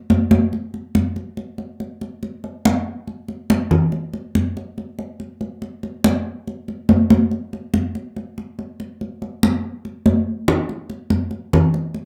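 Driving and sophisticated, this jazz fragment, cut from a longer piece, moves at 142 BPM in a straight 4/4 feel. The only part is a set of acoustic congas, heard from 0.1 to 12.1 seconds. Tuned high and struck with hard hands, the drums ring out and sit up front in the mix. Fills break the flow at 3.5 and again at 10.1 seconds, the second leading into a brief closing passage at 10.7 seconds. Close, detailed microphones capture every stroke, while light reverb and the sense of a live room give the sound some air.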